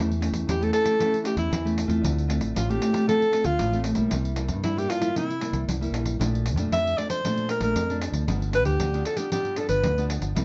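Recorded as a band playing live in one small room with moderate reverb and a soft, rolled-off top end, this joyful, lively samba and choro excerpt moves at 115 BPM in a straight 4/4 over A7/E, Dm7, C7, Bbmaj7 and G7. A round, punchy fingered electric bass sits up front with a dark, amped tone, while a small-sounding nylon-string guitar is fingerpicked with audible finger squeak and a jingly pandeiro, close and dry, enters at 0.1 seconds. At 0.5 seconds a clear, close-miked alto saxophone takes the solo melody in jazz style, with a soft attack and vibrato, playing until 10.1 seconds.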